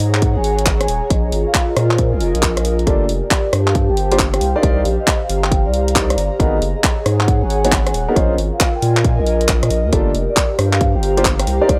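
A thick, saturated sub bass, up-front house handclaps, hi-hat and rim click, and an airy, breathy pad pumping under chorus open this moody, soulful two-step UK garage excerpt in G minor at 136 BPM with a swung 16th feel, joined almost at once by a punchy electronic kick and a mellow, vintage soft-mallet vibraphone melody with tape echo sitting in the background, before a clear, intimate grand piano with audible action noise adds stabs from 2.9 seconds over minor-ninth and minor-seventh chords in a dry, gritty recording with light reverb.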